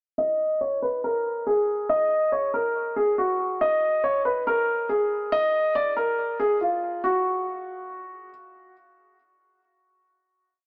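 Menacing and dark, this short hip hop piece runs at 140 BPM in 4/4 with a half-time feel, in Eb minor. A lone baby grand piano, mellow and up front, plays a looping melody between F4 and Eb5 from 0.2 s, repeated like a sampled loop and shaded by a low-pass filter, tape echo and a filter sweep through the breakdown that lasts until 7.0 s. The piano stops at 8.3 s during the final note, and the recording carries a light reverb and a small speaker sound.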